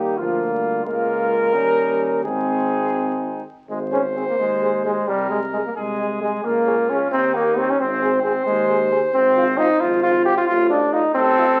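A 6/8 pulse, stretched and relaxed with rubato, carries this stately, warm brass quintet excerpt in classical style, cut from a longer piece. A dark lead trumpet sings the melody over a second trumpet, while a clear French horn and a close-miked trombone sitting up front supply the accompaniment and a tuba anchors the bass; the second trumpet and tuba both sound mellow, distant and roomy, and the lead trumpet and tuba share a light vibrato. A wet, large-studio reverb surrounds the ensemble, and the crackle of a very old 78 rpm record runs underneath.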